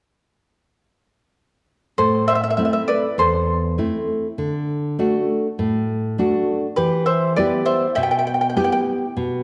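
Andean folk at 100 BPM in a straight 4/4, melancholic and wistful, moving through Am, D and Em in this short cut from a longer piece. From 2.0 s a fingerpicked charango takes the solo, its shimmering double strings, some doubled at the octave, sitting up front until 8.8 s. Beneath it a fingerpicked nylon-string guitar brings a full-bodied, deep classical tone with audible finger squeak through 9.4 s, all set in a dark, warm production with the wet bloom of a scoring-stage reverb.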